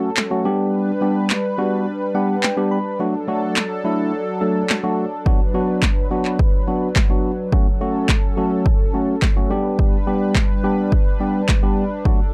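A punchy analog drum machine drives this confident dance-pop excerpt at 106 BPM with up-front kick, snare and handclaps, while a bright, clean tine electric piano (with a fill from 1.9 to 3.0 seconds) and a shimmering, detuned pulse-width pad both pump with sidechain ducking over a G, D, Bm, F#m progression in a dry, gritty recording with light reverb.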